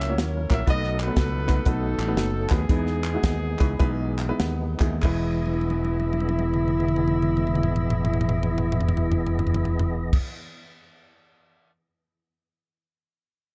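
A swung 4/4 groove at 92-123 BPM, slowing from 0.7 to 5.0 seconds, drives this jubilant, soulful uptempo gospel passage in E major, where a smooth-topped horn section carries the melody over sustained chords from a fat, lightly overdriven tonewheel organ with key click and slow rotary speaker, a growly, punchy fingered electric bass, a hollow group handclap, an intimate baby grand piano that adds a fill at 3.2 seconds, and a dry, up-front funk drum kit whose fill begins at 5.4 seconds and which plays on alone until 11.7 seconds, all set in a dark small room.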